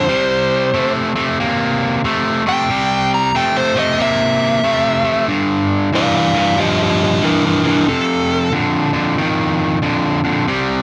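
A dark, smooth lead guitar carries the melody up front, its overdriven, picked line ranging from D4 to Bb5 before it stops at 8.5 seconds. Beneath it, a cranked stack guitar plays a bright, overdriven riff between F2 and Bb3, sitting equally forward and continuing alone to the close at 10.8 seconds. This laid-back, gritty blues moves at 92 BPM in 4/4 with a swung eighth-note feel, set in C mixolydian. The harmony runs from C7 to G5 and then F7. A moderate club reverb gives the two guitars a sense of a small live room, and the passage is cut from a longer piece.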